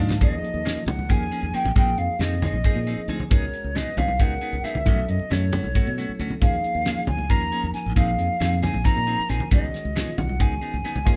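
Driving and slick, this electric jazz fusion excerpt moves at 271 BPM counted in eighths, in a straight 7/8 and the key of Eb minor, with the band playing live in one room under light reverb. A dry, up-front 70s drum kit with a fat snare and tight kick anchors the groove, opening with a fill at 0.0 seconds, while damped, thin-skinned congas sit close but in the background. The growly, direct fingered electric bass carries the low end, and a clean, compressed electric guitar adds picked stabs. A tine electric piano through its built-in speakers, colored by phaser, comps underneath and drops in a fill around 2.6 seconds. Over the top, a mellow, hollow silver concert flute with a crisp attack and vibrato sings the melody from a distance as the harmony cycles through Eb9sus4, Bb9sus4, Db9sus4 and B9sus4.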